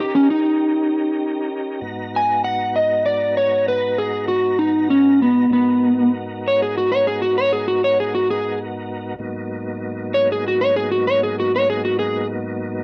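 A slow 12/8 blues in a soulful, mournful mood, this short excerpt features an up-front electric slide guitar, dark and slightly broken-up under fingerpicks, soloing from the start over a tonewheel organ's smooth, clean sustained chords, colored by chorus vibrato and a slow rotary speaker, as the band plays live in one room with moderate studio reverb, the harmony moving from D#7 to G#m7 at 1.8 seconds.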